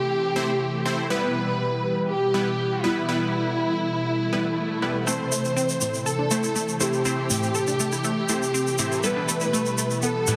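Progressive house at 121 BPM in A minor, this short cut from a longer piece feels driving and emotional, moving between A minor and E minor chords. A velvety synth lead carries the melody with chorus, vibrato and dub echo, while a symphonic violin section plays a second line in the same register, its bowed, expressive tone roughened by vintage 12-bit sampler grit. Underneath, a smooth analog pad holds sustained chords with a slow attack and chorus, and punchy, detuned supersaw stabs cut through with dub echo. An electronic swell appears in the background from 4.2 to 5.1 seconds. At 5.1 seconds a bright unison pluck enters with phaser-treated arpeggios alongside a grainy, band-limited tube shaker placed up front, all set in a lush hall reverb and a dense, heavily limited modern master.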